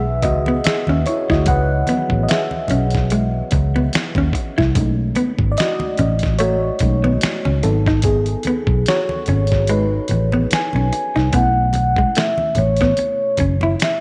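A mellow FM electric piano with a soft, chorused tone takes the lead from the start over a dark, foam-muted fingered bass, soon joined by a clean, hollow-body jazz guitar, a gritty sampler-style kit with finger snaps, a thumpy kick, hi-hat and fat snare, and very quiet, low-tuned congas. This introspective, late-night neo-soul groove has a lazy swing, and the kick drops out from 9.7 to 11.3 seconds. A ringing vibraphone played with soft mallets and slow motor vibrato enters at 10.5 seconds for a smooth closing melody, all set in a moderate echo chamber reverb.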